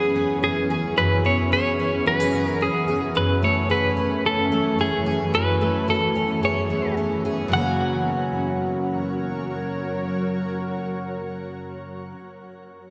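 Dream pop at 110 BPM in a straight 4/4, this ethereal, blissful passage is cut from a longer piece and sits in F# mixolydian. A fingerpicked twelve-string acoustic guitar plays bright, octave-doubled arpeggios from F#2 to G#4, its full-bodied tone given a shimmering edge by lush chorus, shimmer reverb and tape echo. Above it, a clean electric guitar carries the melody between G#4 and F#5 with a dark, compressed, picked sound treated with tremolo, shimmer reverb and tape echo. A granular cloud pad holds sustained chords across a broad register, its blurred, evolving texture built on a slow attack and long release, with its own built-in reverb plus shimmer. All three parts sit up front in a wet plate reverb with a 3.4-second tail, moving from C#m7/F# to Amaj7/F# in the opening section before settling on a plain F# chord when the second section arrives at 7.5 seconds.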